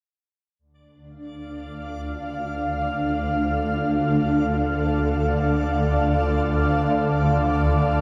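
Ominous and desolate, this dark ambient drone, cut from a longer piece, opens with a fade-in at 0.6 seconds as a blurred, cloudy granular pad of sustained chords enters at 1.2 seconds, joined at 1.7 seconds by a swarming, warbling, detuned low drone carrying a phaser up front, while a reversed, dreamy swelling texture sits faintly in the background, the whole steeped in a huge, wet reverb.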